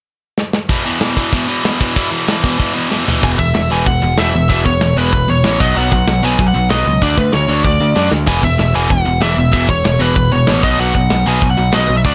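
A drum fill on a tight, up-front kit opens this upbeat, rebellious punk rock cut at 190 BPM in E major, and a scooped, double-tracked distorted guitar riff follows at 0.7 seconds, driving through power chords on E5, B and D5. At 3.2 seconds a punchy, picked electric bass and a nasal, overdriven lead guitar with a parked wah enter together, the lead carrying the melody up front. Further drum fills arrive at 2.9 and 8.0 seconds, and the dry sound keeps the whole fragment of a longer piece raw and immediate.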